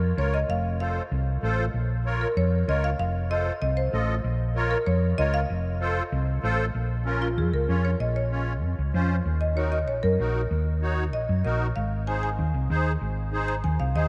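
A straight 4/4 pulse drives this fiery, passionate Latin excerpt at 192 BPM, with a dark, round hollow-body electric bass sitting up front and a shimmering, reedy musette accordion entering at 0.2 s to supply the accompaniment. A bright, woody marimba carries the melody over chords moving from F to Bb minor and F7, then settles into Bb minor at 6.7 s for a marimba solo through Eb minor and Ab. The whole ensemble rings out in a vast, echoing cathedral-like space.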